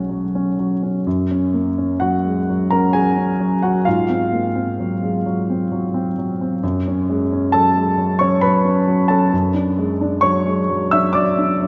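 A warm baby grand piano carries this short fragment of impressionist classical music alone, playing from 0.0 to 11.7 seconds across a span from B1 up to E6. The mood is hazy and luminous, set in a three-beat metre with a freely breathing rubato feel. Its tone is present and up front, with a long sustain that lets each chord ring. The harmony drifts from Bsus2 through F#, G#13 and F#madd9 before settling on E13/F#, giving the passage a hazy, suspended colour. A wet concert hall reverb surrounds the instrument, and the sense of the room places the listener further back in the space.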